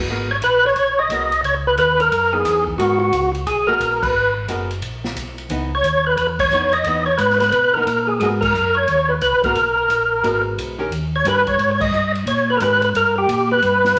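Soulful and smoky, this brisk swinging soul jazz organ trio excerpt in G# minor at 177 BPM features an up-front, fat, lightly overdriven percussive tonewheel organ carrying the melody with key click and slow rotary speaker, over a round, dark tonewheel organ bass with chorus vibrato, a clean, compressed hollow-body archtop guitar comping until 12.8 seconds, and an airy, polished big-band drum kit with punchy kick, all set in a large studio reverb as the band hits accents over a G#m9, C#m9 and D#7 progression.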